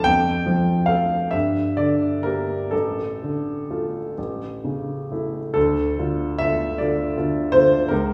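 A 6/8 pulse pulled about by rubato carries this slow, stormy yet bittersweet romantic character piece for solo piano, a brief fragment cut from a longer work. The grand piano sounds intimate and natural, close and up front with audible action noise, ranging from deep bass to the upper middle register as the harmony moves through F, G minor and D minor over A to an A chord, then settles on D minor as a new section begins at 5.6 seconds. A lush recital-hall reverb and a hint of small-room ambience lend the sound a sense of distance.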